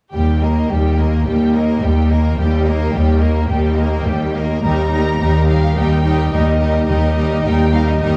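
A lush violin section carries the soaring melody high above with soft-attack vibrato and a smooth top, while a second, brighter and more distant violin section plays a supporting line beneath it in this adventurous cinematic cue at 107 BPM in Eb major, resting on an Eb chord. Focused violas fill in the accompaniment, and a close cello section joins an even, up-front double bass section on a low Eb. At 4.6 seconds a mellow, thumb-plucked concert harp enters in the background with ringing arpeggios, all set in the moderate reverb of a scoring stage with a dark production.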